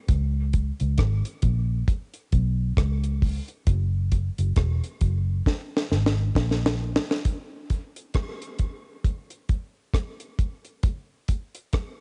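Dub reggae at 67 BPM in 4/4, with a swung sixteenth-note feel, this short cut from a longer piece feels spacious and hypnotic. A vintage muted fingered electric bass sits up front, its tone dark, round and punchy with a foam-muted, amped character, moving between E1 and C#2 before it drops out at 7.0 seconds. A deep reggae drum kit of hi-hat, kick, rim click and snare plays throughout, sounding dry and smooth, with a high-tuned snare and a tight kick set close to the listener and a cassette tape coloring. A drum fill from 5.5 to 7.3 seconds leads into a new section, where the kit carries on by itself until the end at 12.0 seconds. The home cassette recording has little reverb and a dusky top end that tops out at 10.8 kHz.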